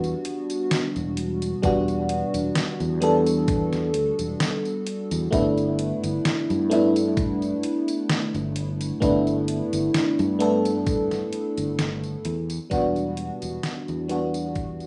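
A slow 65 BPM groove in 4/4 drifts with a light swing on the sixteenths, carried by a detuned 8-bit digital drum machine playing hi-hat, medium-tuned snare and tambourine, joined at 1.6 seconds by a thumpy electronic kick, both coloured by 12-bit sampler grit and small room ambience. This nostalgic, woozy vaporwave piece in G major sits slightly below standard pitch, with an FM electric piano layered over a soft pad leading the accompaniment up front. Its lush, dreamy tone, fast attack and decaying notes pass through analog chorus, cassette tape and tape echo, moving from Em9 to G69 at 5.3 seconds and back to Em9. Underneath, a fretless electric bass with tube saturation holds the low end in a warm, direct voice. The rough home demo mix has moderate studio reverb, and the excerpt, cut from a longer piece, fades out from 10.3 seconds.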